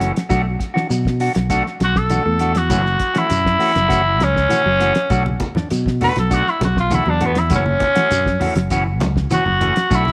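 A straight 4/4 groove at 100 BPM drives this funky, hypnotic afrobeat passage in B minor. It is carried by a cloth-damped drum kit with a fat snare, tight kick and rolled-off top, alongside a fingered electric bass that sounds direct and amped. A clean electric guitar plays dark stabs colored by harmonic tremolo. From 0.3 seconds a mellow second guitar adds arpeggios through analog chorus in the background, while a grainy, vintage shekere sits further back. A breathy, raspy tenor saxophone takes the solo up front from 1.8 seconds, and bright, low-tuned, compressed congas with a thin skin join at 5.1 seconds. The harmony sways between Bm7 and F#m7 amid studio ambience with light reverb, and the passage is cut from a longer piece.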